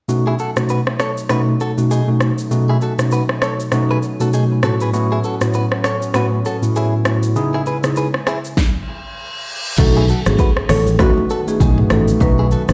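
A romantic, sunny afrobeats groove at 99 BPM in B mixolydian, swung on the sixteenths and cut from a longer piece. A bright tine electric piano sits up front with the chords, moving from B7 through A69 and C#m7, while a smooth, detuned analog pad with subtle chorus hums in the background and a deep house drum kit with a deep kick, fat snare and metallic hats drives the beat. A clean, picked electric guitar, recorded direct and compressed, plays a riff through tape echo. At 8.6 seconds the groove stops and a reverse cymbal rises into the second section at 9.8 seconds, where a punchy fingered electric bass, very quiet damped congas and a woody marimba melody with tape echo and plate reverb join in. The whole mix carries a large studio reverb, as if played on a big sound system in a bare room.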